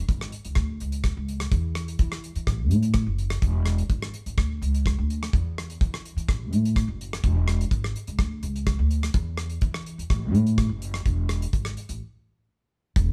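A woody, thumpy upright bass on gut strings sits up front, plucked pizzicato from E1 to E3 and carrying this joyful, danceable highlife guitar band groove in E mixolydian. Beside it, a damped 70s drum kit keeps a straight 4/4 pulse at 126 BPM with hi-hat, a tight kick drum and rim click, its dry, airy sound polished and close. The two play together from the start, the bass at 0.0 seconds and the drums at 0.1 seconds, like a band captured live in one room with a light reverb. A break arrives at 12.0 seconds before this short cut from a longer piece ends at 13.1 seconds.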